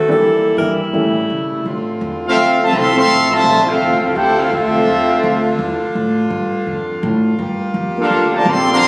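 Caught on a phone in the room and bathed in a reverberant hall, this brassy, swinging big band excerpt opens with a close-miked alto saxophone playing a brief vibrato solo up front, while a dark, worn baby grand piano adds mellow, short-sustained accompaniment with audible action noise. Bright saxophone section chords and a woody, growly pizzicato upright bass carry the D minor swing at 168 BPM throughout. From 2.3 seconds a roomy, distant trumpet section takes the melody over a clear, soft-attack trombone section on a second line, and both brass sections return at 8.0 seconds.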